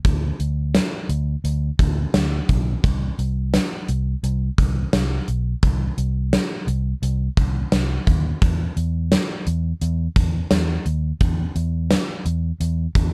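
This 1980s-style pop excerpt opens with a gated drum kit and a vintage muted electric bass playing together from the first moment, holding a straight 4/4 at 86 BPM with a nostalgic yet urgent mood. The acoustic kit sits up front, its punchy kick, medium-tuned snare, hi-hat and tambourine ringing into a bright stone room that is cut short by the gating, giving an airy, polished snap. Beneath it, the fingered bass stays low between B1 and E2, its foam-muted tone round and amped, dark and punchy. The bass sits a little lower in level than the drums, but both parts run through the full 13.1 seconds as a single section. A moderate booth ambience and a dark production frame the pair, keeping the short fragment tight and focused.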